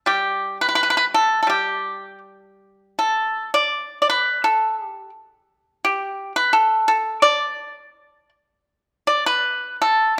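A solo pipa, played with fingerpicks, carries this brief passage of Chinese traditional music, its acoustic tone warm, dry and percussive as it sits up front in the sound. The mood is elegant and pastoral, moving in a flexible rubato around 79-87 BPM in 2/4 time. The pipa ranges from G3 to D5, sounding from 0.1 to 10.1 seconds. A moderate recital hall reverb surrounds the instrument, giving it a sense of space. At 8.7 seconds the music shifts into a new section, and the fragment ends shortly after, cut from a longer piece.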